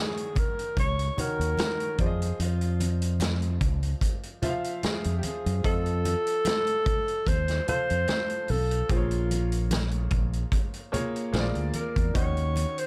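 Lush 1970s-style soul in D-flat major at a relaxed 74 BPM with a gently swung sixteenth feel, this romantic 12.9-second fragment of a longer piece sets a breathy, subtone alto saxophone with scooped notes on a jazz-style solo melody over clear, long-sustaining baby grand piano chords moving from Ebm7 through a rootless Dbmaj7 to F7 and Bbm7, while a gritty, saturated vintage drum kit with a tight kick and rolled-off top plays up front, low-tuned, thick-skinned congas sit warm in the background, and a bright, punchy fingered electric bass joins at 0.8 s, all in a small room ambience.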